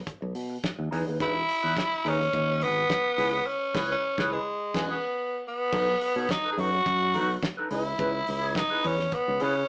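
Sultry and glamorous, this short disco cut at 106 BPM in straight 4/4 features a raspy, growling tenor saxophone playing an up-front jazz-style solo line with vibrato from 1.2 seconds over a dark, clean wah guitar, a bright, growly fingered electric bass, and a damped 70s drum kit with a fat snare, tight kick and dark cymbals, the band live in one room with a small-speaker sound and wet studio reverb, hitting accents between 3.5 and 5.7 seconds as the chords move through B7, Emaj7, C#m7 and E6.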